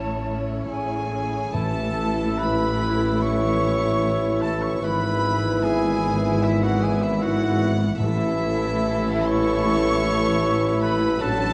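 This classical passage, cut from a longer piece, is tender and lyrical, moving at an unhurried pace with elastic, rubato timing. A rich chamber violin section carries the melody with light vibrato and an intimate, close presence, while a second violin line, an airy silver flute and, from 1.5 seconds, a clear oboe and a very quiet, soft clarinet weave supporting lines in the background. Underneath, a viola section with portamento and a mellow bassoon fill out the accompaniment, and cellos, double basses and a roomy tuba anchor the bass, with a dark, distant French horn section sustaining chords. A clear, distant trumpet adds stabs from 0.7 seconds, and close, dry timpani strikes sound briefly from 1.5 and again at 8.0 seconds. The harmony rests on A, shifts to E over G# and settles back, all set in the wet reverb of a recital hall with a dark, warm production.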